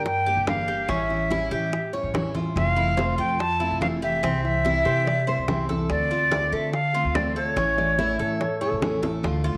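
A breathy, bright concert flute leads this Cuban son and guajira from 0.0 seconds, carrying a tongued melody with vibrato up front. Beneath it sit a picked jumbo steel-string acoustic guitar, a metallic Cuban tres spinning arpeggios on its doubled strings, and a woody, growly pizzicato upright bass. Round, low-tuned bongos sit close and dry in the background, while soft-handed congas ring very quietly underneath with a compressed, saturated tone. The feel is danceable at 144 BPM in a straight 4/4, with the harmony moving through Gm, A7, Fmaj7, C, Dm7 and A. At 4.9 seconds a full-bodied, fingerpicked nylon-string guitar joins with a classical second line, its finger squeaks audible. A moderate spring reverb and small room ambience give the ensemble a warm, intimate sound, and a drum fill at 9.0 seconds marks the close of this cut from a longer piece.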